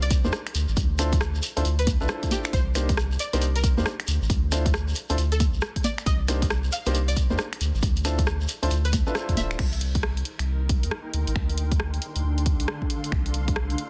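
UK garage with a bouncy, skippy two-step swing at 136 BPM in C dorian, built on a punchy electronic kick, a thick, saturated sub bass up front and a house kit of congas, crash cymbal, finger snaps, rim clicks and warm hats with a clipped snare, while a twangy, string-like resonator pluck with chorus and dub echo, open grand piano stabs and a grainy shekere in the background carry the drop until 9.6 seconds, after which a blurred, evolving granular pad drifts in at 10.5 seconds over a dense, heavily limited master.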